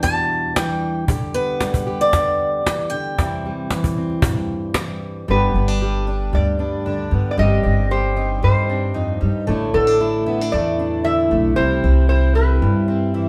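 Warm and hopeful, this short excerpt from a longer acoustic folk piece moves at a straight 114 BPM in 4/4, in G major. It opens with a bright, boxy swing-style acoustic guitar carrying the melody up front, over a full-bodied fingerpicked steel-string acoustic guitar and a snappy, close and dry cajon struck with hard hands, moving through Em7, G/D and C. Just before 5.3 seconds the melody guitar and cajon drop away, and the music then shifts to a new section built on G, Cmadd9/G, Asus4 and C. There a metal-body resonator guitar takes a solo with a steel bar and fingerpicks, its tone metallic and nasal. A shimmering, octave-doubled twelve-string acoustic guitar picks arpeggios beneath it, while a woody, thumpy pizzicato upright bass anchors the low end. The band sounds as if playing live together in one room, with moderate studio reverb.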